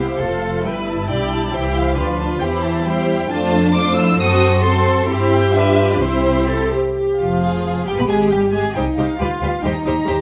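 Graceful and cheerful, this quick classical-period movement for string orchestra moves at 134 BPM in 2/4 with a rubato feel, opening in C major before turning to C minor at 7.0 s. A dark, woody violin section carries the melody high above, while a second violin section adds a rich, focused line with a smooth top. Beneath them, the violas supply soft-attacked, expressive accompaniment, and the cellos and double basses share the bass, the cellos intimate and close, the double basses dark and up front. All five sections play with vibrato from start to finish, and the harmony passes through a diminished chord and a dominant seventh on its way back to C before the minor-key turn colours the closing bars. A moderate recital hall reverb gives the ensemble a natural sense of space in this excerpt from a longer piece.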